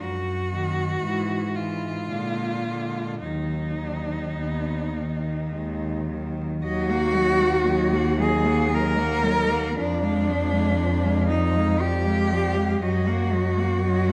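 A melancholic, elegiac classical excerpt for four bowed cellos in Eb minor and 3/4 opens with a focused, smooth-topped melody over an up-front, expressive bass line shaded with portamento. A distant second line and a close, even accompaniment join at 0.5 s. Slow and rubato at 52-60 BPM, the rich, vibrato-laden voices state the opening section and then return to it at 6.6 s, bathed in a lingering recital-hall reverb.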